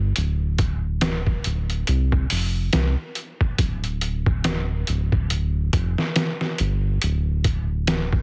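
A round, deep analog bass opens this brooding, hypnotic trip hop excerpt, its detuned, dark tone sitting up front in a lilting swung groove as a gritty, pitched-down sampler-style drum kit with a thumpy kick, medium-tuned snare and hi-hat joins at 0.2 seconds, all wrapped in a heavily compressed, radio-like digital ambience.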